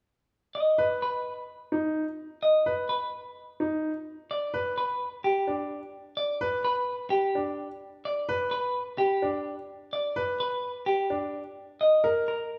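A straight 4/4 pulse at 128 BPM drives this short fragment of minimalist classical pattern music, its mood hypnotic and bright. A semi-hollow electric guitar carries the melody from 0.6 seconds, its clean, picked hollow-body tone sitting up front in the range from G4 to D#5. Just after, at 0.8 seconds, a grand piano enters with arpeggios between D4 and B4, its sound clear and a little boxy, with short sustain, also placed close and forward but a touch lower in level than the guitar. The harmony moves from B to a rootless G/D and, near the end, to A#5. A wet recital-hall reverb with a 1.7-second decay surrounds the performance, and the piece is cut off at 12.6 seconds as the guitar stops.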